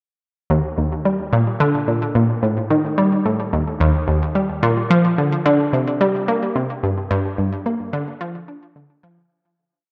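A lone analog pluck opens at 0.5 seconds, its round, detuned sawtooth tone sitting bright and up front as it repeats a 12-step sequence that drifts against the bar, ranging from Eb2 to D4 in Eb lydian. This luminous, expansive ambient piece moves at 109 BPM in a straight 4/4, the pluck's fast, decaying notes thickened by chorus and delay and bathed in a wet spring reverb that makes the mix echo-heavy. The sound fades out from 6.4 seconds until the piece ends at 9.3 seconds.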